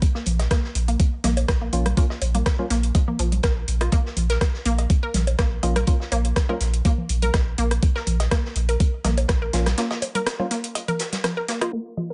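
A lightly swung 123 BPM groove in 4/4 rides on an overdriven, knocking electronic kick up front, with metallic hi-hats and rim clicks from an overdriven garage kit, a warm background acoustic kit adding pumping, filtered hats and a medium-tuned snare, and tape-warm congas, cowbell and bongos. In Bb minor, a punchy sine sub bass with a pitch-drop attack sits beneath a squelchy, detuned, resonant blip pluck riff with chorus and delay, while a hollow, dark organ stab recurs every few seconds. This clinical, hypnotic minimal techno excerpt has a digital, filtered ambience, and the kick falls away at 9.4 s before a break from 9.8 s.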